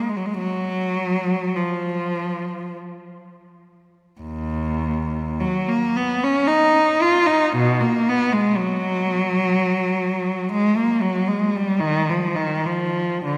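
Rubato phrasing in a loose three-four pulse lets this classical solo breathe freely, stretching and yielding with an expressive, yearning and meditative mood. A single bowed cello carries the whole passage, its rich voice sitting up front and spanning from a low Eb2 to F4. The playing is marked by vibrato and gliding portamento between notes, lending each phrase a singing quality. A church reverb with a long 3.2-second tail surrounds the instrument, giving the sound a spacious, resonant halo. The fragment lasts 13.4 seconds and is cut from a longer piece, staying within one unhurried section throughout.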